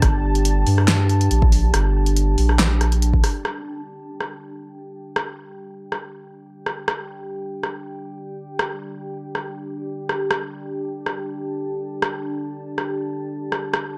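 Dark and heavy, this half-time deep dubstep excerpt opens on a drop where a round, soft sub bass pushes up front alongside an electronic kick, both cutting out at 3.2 seconds. A fat-snared deep house kit of handclaps, hi-hat, rim click and snare, tape-warm and re-recorded in a small room, plays on until 13.8 seconds. Beneath it all, a moody ambient pad of detuned sawtooth, wave-folded and ring-modulated tones holds sustained chords with a slow attack, chorus and reverb through to 14.0 seconds, all set in a dark, lightly reverberant mix.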